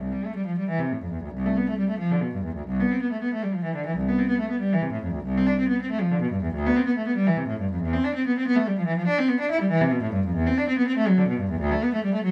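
This is a baroque-style classical suite movement for unaccompanied cello, flowing and dance-like in character. It moves in a lilting 12/8 at 94 beats per minute counted in dotted quarters, with a rubato feel that lets the pulse breathe, and it sits in C major. A single bowed cello carries everything alone for the full 12.3 seconds, ranging from C2 up to E4. Its tone is rich and focused, colored by vibrato, and it sits up front in the mix. A moderate studio reverb adds a sense of space around the instrument. The recording is a short section cut from a longer piece.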